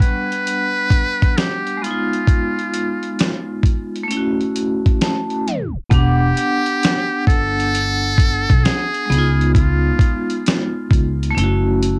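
Nostalgic and hazy, this lo-fi hip hop excerpt sits at a slow 66 BPM with a swung 16th-note feel. A buzzy, thin trumpet with a metal mute carries the solo melody with vibrato and scooped notes until 10.4 seconds, over a ringing hard-mallet vibraphone accompaniment with slow motor vibrato and a gritty, thumpy sampler-style drum kit, all colored by cassette tape. A tape stop at 5.5 seconds gives way to the second section, where a woody pizzicato upright bass enters at 5.9 seconds as the chords move from Em7 through C#7 to F#m7, all in a light reverb with a home-recorded cassette character.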